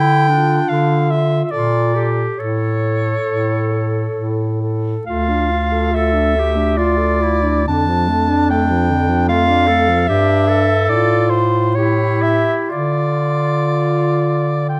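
A mellow soprano saxophone with vibrato and a smooth top carries the melody up front from the start over a clear bass clarinet bass and a bright, close-miked clarinet accompaniment, joined at 0.3 seconds by an alto saxophone second line, in this solemn, yearning classical fragment for single-reed quartet in D minor, moving in a rubato 3/4 at 56-77 BPM through Bbmaj7 and A7 before returning to Dm, captured with close, detailed microphones and light reverb.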